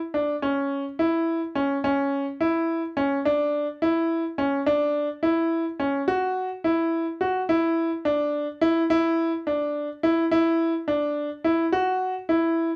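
A bright grand piano carries this short progressive instrumental on its own, sounding from 0.1 s to 12.7 s and sitting up front in the mix. The mood is intricate and driving, set in an odd 5/8 metre at 212 BPM counted in eighths with a straight feel. The piano keeps to a compact span between C#4 and F#4, and its tone is brilliant yet natural. A moderate studio reverb gives the instrument a modest sense of room. The passage falls into two sections, with the second beginning at 6.1 s, and it is cut from a longer piece.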